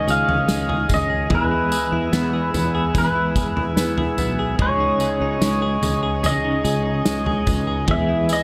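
Dream pop at 73 BPM in a straight 4/4, this short excerpt from a longer piece feels blissful and dreamy as it drifts between Dbsus2 and E chords. A bright, twangy pedal steel guitar carries the melody, played with fingerpicks and slide in volume swells, its compressed tone trailed by delay and shimmer reverb. Beneath it, a direct-recorded clean electric guitar picks bright arpeggios dressed in subtle chorus, delay and shimmer reverb, while a dark, picked clean electric guitar sits in the background with tremolo and analog chorus. A soft, flute-like tonewheel organ holds sustained chords with a touch of key click, turning through a slow rotary speaker into shimmer reverb. A growly, punchy fretless bass enters at 0.1 seconds under ensemble chorus, alongside a loose indie drum kit placed up front, with a tight kick, medium-tuned snare, tambourine and toms pumping in a small room, all framed by light reverb and small room ambience.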